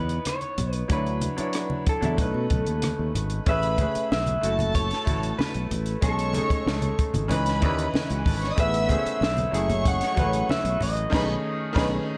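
Lush 1970s-style soul at 94 BPM, bittersweet and cinematic, in which a slightly broken-up, lo-fi electric guitar carries the melody over brilliant baby grand piano chords, a growly fingered electric bass, a compact cocktail drum kit with a high-tuned snare and punchy kick, and low-tuned congas in the background, while a dark, woody bowed string section adds a second line from 3.5 s and cup-muted trombones with tape echo slip in soft stabs at 8.6 s before a band accent at 11.1 s closes this cut from a longer piece.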